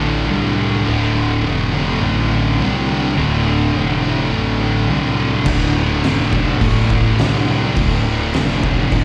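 This clip sounds like a live gig heard through the venue's PA, with club reverb and lossy compression artefacts. It is brooding, heavy stoner and doom metal at 104 BPM in a straight 4/4, built on a D minor chord. An overdriven, fuzzed picked electric bass sits up front. Three fuzz guitars play the riff in the low register: a bright, double-tracked and compressed one, a warm thick one, and a dark thick one in the background, with one of the two thick guitars carrying a slapback echo. Behind them, a very quiet vintage string machine sustains shimmering, sawtooth violin chords with a soft attack and ensemble chorus. At 5.5 seconds an oversized, low-tuned acoustic drum kit enters with a boomy kick, fat snare, hi-hat and crash cymbal, sounding saturated and gritty in a stone room.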